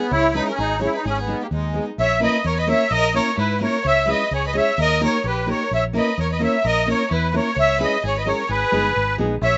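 A reedy, shimmering musette accordion leads up front with slapback echo in this fiery, virtuosic Balkan wedding-band folk excerpt in swung 2/4, joined by an intimate sul tasto violin second line with light vibrato and its own slapback, over fingerpicked nylon-string guitar and a foam-muted, direct fingered electric bass, all captured dry outdoors with a rolled-off top end.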